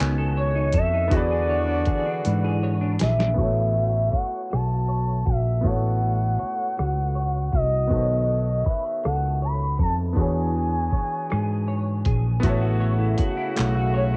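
Slow six-eight R&B with an intimate, warm mood, built on a gritty, thumpy sampler-style drum kit with cassette grit and a round, punchy fretless bass, both sitting up front, while a bright, worn grand piano and a dark, hollow-body semi-hollow guitar with ensemble chorus fill in beneath. A smooth, gliding portamento lead with vibrato, phaser and plate reverb carries the melody from 0.4 seconds, and a distant, roomy horn section adds stabs at the opening and again from 12.4 seconds. A drum fill leads into the middle section at 3.4 seconds, where a filter sweep runs through, and the whole cut has the soft, low-passed haze of a home cassette recording.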